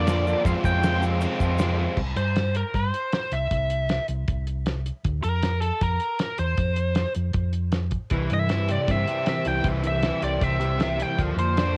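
A straight 4/4 drive carries this jangly, upbeat indie rock excerpt, cut from a longer piece and recorded at home on cassette with light reverb, as a dry, dark, cloth-damped kit with a fat snare and tight kick thuds up front beside a round, punchy hollow-body bass. A biting, overdriven lead guitar carries the melody throughout, while a fuzzy, chorused guitar riff in the background, a warm, overdriven semi-hollow guitar riff and a lush, phased string machine sit under it for the opening 2.0 seconds and return at 8.1 seconds. A grainy tube shaker ticks faintly in the background until 1.7 seconds.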